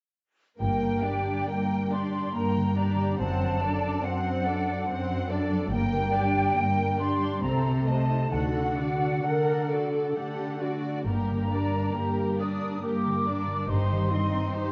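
An up-front cello section anchors this yearning, solemn classical excerpt in G minor with a smooth, even bass line, moving in a rubato 3/4 at around 65-73 BPM. Above it, a close violin section sings the melody with expressive vibrato. A dark, woody second violin section and a pure, crisp-attacked flute section add second lines, and a dark viola section supplies accompaniment. In the background, a ringing harp plays arpeggios and a double bass section adds soft-attacked portamento. The recording sits in a recital-hall reverb with a rolled-off top end, and its harmony moves from Gm through D7/F# and Adim/C before settling on Cm/G at 13.7 seconds.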